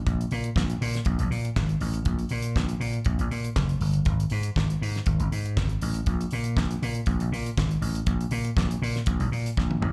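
This sounds like a live gig heard through the venue's PA, with a touch of club reverb around a fairly close, upfront sound. It is a short cut from a longer disco piece, driving and sultry, moving at 120 BPM in a straight 4/4, with tuning set slightly sharp at A4 = 441 Hz. A vintage electric slap bass carries the low end from 0.1 seconds, amped, growly and punchy, ranging from F#1 to A#2 and sitting up front in the mix. A damped 70s acoustic drum kit plays alongside it for the whole clip, dry and polished, with a fat snare, a tight kick, hi-hat, toms and handclaps. A drum fill at 9.6 seconds closes the excerpt.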